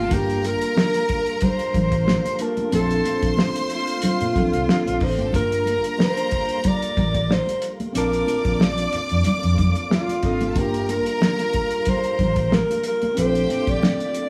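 A breathy, close-miked alto saxophone carries the melody up front with scooped notes and a whispered, intimate vibrato, floating over a lush 1970s-style soul groove in G minor at 92 BPM with a gentle sixteenth-note swing, cut from a longer piece and moving between Gm7 and Bbmaj7. Bowed studio strings add a smooth second line, a mellow tine electric piano supplies clean accompaniment, and a lightly overdriven tonewheel organ holds sustained chords in the background through a slow rotary speaker with chorus vibrato. A round, foam-muted fingered bass and a cloth-damped, thuddy drum kit with a fat snare and tight kick anchor the bittersweet, silky mood, while bright, high-tuned congas sit in the background, the band playing live together in a small stone room.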